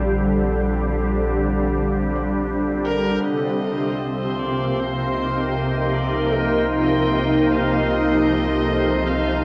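A weightless, warm ambient passage at 77 BPM opens on an up-front, organ-like pad holding pure, calm chords drenched in ensemble chorus and reverb over a round sub bass and a very quiet felt-muted upright piano whose intimate arpeggios carry audible action noise. A clear, intense electric violin with smooth-topped vibrato enters at 2.9 s, just before the harmony moves from Bbmaj7 to Cm, and gradually fades up through cassette tape and analog delay. At 3.6 s a glassy texture of drifting overtones joins, all heard as a home cassette recording in a wet small room.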